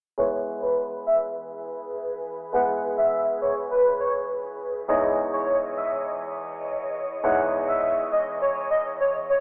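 Euphoric and upbeat, this 102 BPM pop excerpt in E major sets a dreamy, detuned sine lead with vibrato, chorus and digital delay over an up-front grand piano from 0.2 s, joined at 0.7 s by a breathy, slow-attack pad with phaser, as a filter sweep runs through a lush hall reverb and a rough, telephone-like demo sound while the harmony moves from E to C#madd9/E at 4.9 s.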